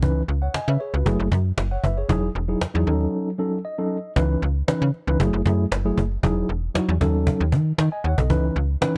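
A snappy, up-front FM bass with a metallic, fast attack that then decays drives this funky, late-night boogie funk cut at 116 BPM in C# minor, underpinned by a woody cajon struck with hard hands and faint snares. A mellow, clean tine electric piano, heard as if through its built-in speakers, carries the lush chords, cycling from C#m9 through F#m9 and Emaj9 to D#m7b5. A break at 3.1 seconds opens room for a short electric piano fill before the progression returns at 4.2 seconds, all in a dry, close studio sound from the 1970s.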